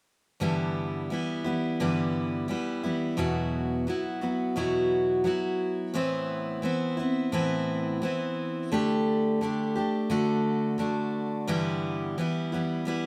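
In a straight, unhurried 4/4, a lone picked steel-string acoustic guitar carries this hopeful, gentle folk excerpt from 0.4 to 13.1 seconds. The jumbo guitar sounds bright and full-bodied, sitting up front as it moves through its chords: G6, Esus2, Amadd9 and Dsus4 resolving to D. At 11.5 seconds it returns to G6 to begin a new section. A moderate studio reverb lends the guitar a gentle sense of space.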